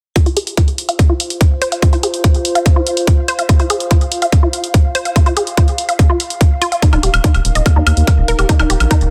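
Psychedelic trance with a driving, hypnotic pull, this short cut from a longer piece rides a straight 4/4 pulse. A tight, layered electronic kick sits up front, joined by electronic hi-hat and woodblock in a small room ambience. The riff comes from a woody, wave-folded pluck with a mellow, organic bite, colored by chorus, cassette tape grit, tape echo and sidechain pumping, while a filter sweep moves across this synth arpeggio throughout. Beneath it, a warbling, lo-fi pad adds nostalgic, detuned haze with chorus, built-in reverb and the same pumping. The harmony shifts from F5 to Eb5 at 6.8 seconds, and at 6.9 seconds a round, deep analog bass enters up front to thicken the low end. The mix is dense and heavily limited, with a modern digital sheen.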